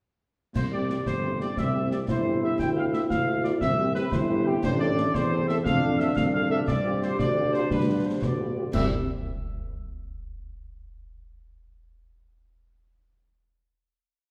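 In a 6/8 march feel, this short, festive military-style piece for wind band opens with a warm tuba sounding bass on the beats, soon joined by a dark trumpet section carrying the melody up front, a marching snare over on-the-beat concert bass drum with dark clash cymbals, a French horn section playing after-beat chords with light vibrato, and a clear trombone section adding a counter-melody in sustained chords from 1.1 seconds, all set back in a reverberant recital hall before closing on a final chord at 8.7 seconds.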